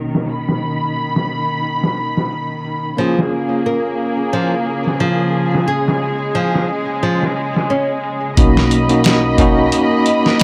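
A light reverb and small room ambience frame this brooding, melancholic trip hop excerpt, cut from a longer piece and moving at 89 BPM in 4/4 with a slight swing on the sixteenths. A bell-like tine electric piano carries the accompaniment from the start, treated with tremolo, tape echo and a low-pass filter, and a filter sweep runs across it until 8.4 seconds. Alongside it, a muted string section holds sustained chords, its con sordino tone veiled and dark, bowed with vibrato, while a gritty, compressed sampler-style drum kit sits up front with a thumpy kick, a medium-tuned snare and hi-hat, each dulled by a low-pass filter. A fingerpicked nylon-string guitar plays arpeggios from 3.0 to 7.9 seconds, small and intimate with audible finger squeak and a touch of tape echo. The harmony moves from Bmaj7 to A#m7 and back to Bmaj7 as a new section opens at 8.4 seconds, where a woody pizzicato upright bass briefly sounds a low B.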